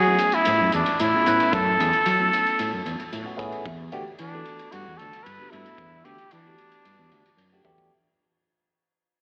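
Electric jazz fusion at 113 BPM in a straight 4/4, this nocturnal, driving fragment is cut from a longer piece and fades out throughout as it moves from F#m11 to Em11. A muted trumpet carries the melody up front, nasal and breathy with light vibrato and an intimate, whispered tone. Beneath it a growly fretless bass with subtle chorus, a bell-like tine electric piano treated with phaser and slapback echo, and a crisp drum kit with a punchy kick, hi-hat and ride all sit in the mix. The drums add a fill at 7.6 seconds, and the whole recording has the feel of a live gig heard through the venue's PA, with recital-hall reverb and an AM-radio colour.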